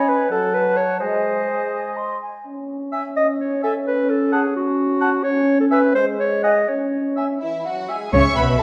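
This short classical excerpt in C# minor moves in a stormy, dramatic 6/8 at roughly 81-88 BPM, counted in dotted quarters with a straight feel. From the opening, a clear, distant oboe, a mellow, hollow flute with airy vibrato, and an up-front clarinet weave secondary lines above sustained chords from a roomy French horn section. Harmonies pass from F#madd11 to G#, through a stretch with the chord dropping out, then G#sus4 resolving to C#m at 6.7 seconds. At 7.4 seconds the violins arrive, one section carrying the melody with lush, smooth vibrato while another adds a second line beneath. At 8.1 seconds the viola section adds accompaniment, while a very quiet dark trombone section, a rich cello section and a woody, up-front double bass section fill out the lower harmony and bass. A wet recital hall reverb lends the ensemble a spacious, resonant glow.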